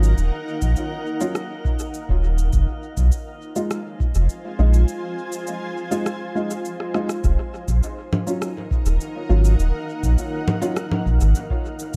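A round, sine-like sub bass sits up front in this meditative ambient dub excerpt at 102 BPM in Eb minor, moving between Ebm(add9) and Fm7 beneath a cloudy, detuned granular pad that blurs the sustained chords in its own reverb. Dark, woody upright piano stabs drift through dub echo until 10.7 s, while electronic cabasa, rim click and congas and a tape-toned analog kick, entering at 0.6 s, sit back in studio reverb. A faint glassy texture of drifting overtones, softened by chorus, floats in the background until 7.3 s, as a break and a short drum fill lead into the return of the opening chord in an echo-heavy digital ambience.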